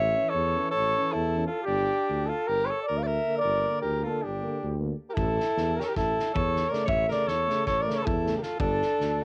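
In a straight 9/8 at 312 BPM counted in eighths, this bittersweet, virtuosic Balkan brass band excerpt in A phrygian dominant sets a mellow, distant flugelhorn melody with light vibrato up front over a bright alto saxophone second line and a dark, soft-attacked tuba bass, with trombone and warm euphonium accompaniment in the background from 0.2 s, a loose indie drum kit with fat snare and punchy, gritty kick entering at 5.2 s, and chords moving from A to Gm and back to A before a closing G5, all heard as a home recording on cassette with light reverb.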